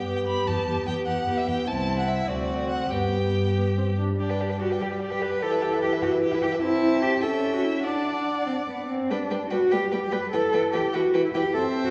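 A dark, woody cello sits up front with a soft attack and vibrato, carrying the bass line from 0.1 s in this cheerful, graceful classical-period movement for string quartet. It moves in a quick 6/8 at 98 BPM counted in dotted quarters, shaped with rubato, in G major. Above it, the first violin sings the melody with a focused, rich tone and a smooth top. The second violin plays an expressive second line with portamento and gentle entries. The viola fills in the accompaniment with a more distant, shadowy colour. The quartet is heard from further back in a recital hall with a reverberant, lingering decay, and the harmony moves through Em, Am/C and D7 to G before a second section begins at 4.2 s, where an A7/C# leads to D and back to G and Em in this brief portion cut from a longer piece.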